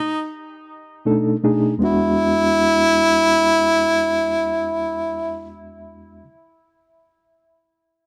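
A gritty, laid-back blues fragment in free time and E mixolydian opens on a close-miked, overdriven harmonica playing a jazz-style solo with light vibrato, tongue slaps and scooped notes over B7#9 moving to E9, joined at 1.1 seconds by a mellow, reedy electric piano with fast tremolo through its built-in speakers, both up front in a moderate studio reverb.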